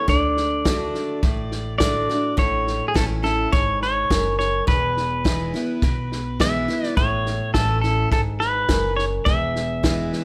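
With a light touch of reverb and a clean, up-front pedal steel guitar carrying the melody, this sunny, easygoing honky-tonk and classic country passage in A major moves at 104 BPM in a straight 4/4: the twangy, compressed steel, played with fingerpicks, slide and volume swells, rides over a bright, full-bodied dreadnought acoustic guitar picked with audible finger squeak, a woody, thumpy pizzicato upright bass on gut strings, and a punchy, up-front vintage drum kit of kick, medium-tuned snare and hi-hat with a rolled-off top, all cycling through D, A and E.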